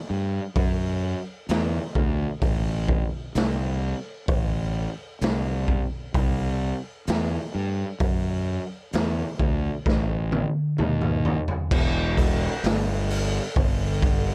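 Ominous and sludgy, this short stoner and doom metal excerpt pairs a dark, round, fuzz-drenched fingered electric bass, growling from E1 to G2 from 0.1 seconds, with a raw, gritty garage drum kit of punchy kick, medium-tuned snare, hi-hat, toms and crash that enters at 0.6 seconds in a pumping small room, both up front and dry, with a drum fill from 9.9 seconds leading into a new section at 11.7 seconds.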